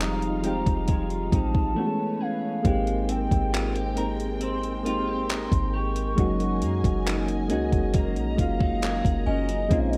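A digital ambience surrounds this tender, dreamy excerpt of contemporary R&B, which moves at a slow 68 BPM in straight 4/4 and breaks into a silent gap from 1.8 to 2.6 seconds. Up front, a gated 80s digital drum machine drives the groove with a thumpy kick, hi-hat and handclaps, its sampler-style hits overdriven and re-recorded in a small room. A deep, boomy 808-style bass with a sine tone sits beneath it. A soft electric-piano-like synth keys part adds round, mellow chords with a filter sweep and chorus, and a clean electric guitar picks compressed, scooped arpeggios through a lush chorus. Over a bed of dark, bowed studio strings, a hollow, woody clarinet-like synth lead carries the melody with vibrato, chorus and delay. A very quiet, inharmonic FM chime rings only at the opening and again from 9.3 seconds, as the harmony drifts from Fm9 through Amaj9 and Abmaj9 to Gb69.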